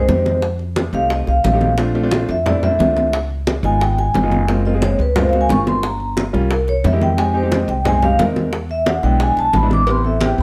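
Afro-Cuban jazz with a driving, sophisticated mood, this short cut from a longer piece features a metallic, airy vibraphone solo with fast motor vibrato over smooth, vintage upright piano accompaniment, a dark, thumpy pizzicato upright bass on gut strings sitting up front, ringing low-tuned congas, and tight, saturated high-tuned bongos and cowbell played with hard hands, set in moderate studio reverb as the harmony moves from F7 through Gbmaj9#11 to Am7.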